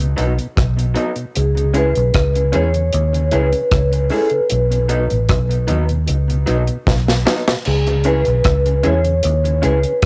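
A home cassette recording with light reverb frames this hypnotic, meditative roots reggae excerpt, where a round, foam-muted fingered electric bass and a dry, up-front drum kit with dark cymbals and a tight kick anchor the groove; a slightly broken-up guitar through a small old amp carries dub echo and plate reverb; a mellow tonewheel organ with key click and slow rotary speaker sits in the background; a soft-mallet vibraphone enters at 1.4 seconds with a metallic, ringing melody shimmering with fast motor vibrato; and a drum fill arrives at 6.9 seconds.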